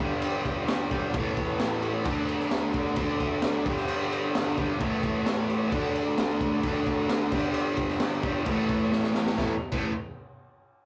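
A bright, double-tracked fuzz guitar riff drives this swaggering, raw garage rock excerpt in A mixolydian at 131 BPM, cycling G, A and D over a gritty, dark-cymbaled breakbeat kit with a high-tuned snare and a drum fill at 8.9 seconds, while a very quiet, reedy combo organ with light vibrato holds sustained chords, all in a rough rehearsal-room sound with moderate reverb.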